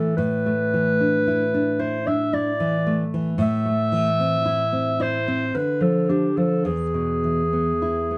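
A dark clarinet and a nylon-string guitar begin together at the very start of this brief, solemn passage cut from a longer romantic duo. The clarinet carries the melody in its middle register, between G4 and E5, with a distant, roomy character in a classical style, even while it sits up front in the mix. The guitar supplies the accompaniment, thumb-plucked on fresh strings, reaching down to E2 for a deep classical foundation and sounding slightly louder than the clarinet. The pace is slow and elegiac, around 51 to 57 BPM in 3/4, with a rubato feel that lets the time breathe. The harmony moves from an E5 over A to A minor, then through D minor to E, and a light reverb gives the pair a gentle sense of space across the 8.2 seconds.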